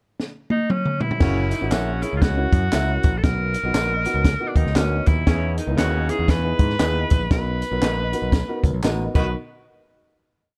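A forceful, punchy tenor saxophone carries hook phrases over an uptempo 1960s-style soul groove, where a compact cocktail drum kit with a high-tuned snare on all four beats opens with a fill before round, syncopated picked bass, woody upright piano chords, tight horn-section riffs and background tambourine and handclaps join at 1.2 seconds, with slightly broken-up guitar chops following at 1.7 seconds, all in a dark, danceable production that ends on a final hit.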